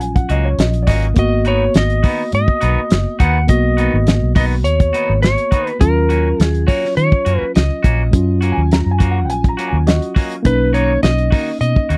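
This smoky, brooding excerpt of straight-eighth soul blues in Eb minor at 103 BPM opens on a muffled soul drum kit with a fat snare, a round, foam-muted electric bass, a worn, lightly overdriven tine electric piano and a woody upright piano that drops out and briefly returns at 8.5 seconds, while a bright, twangy clean electric guitar adds stabs from 0.3 seconds and a dark lap steel, played with fingerpicks and slide in volume swells, takes the melody at 1.2 seconds over Ebm7, Abm7 and Bmaj7 chords in a dry, close 1970s-style studio sound.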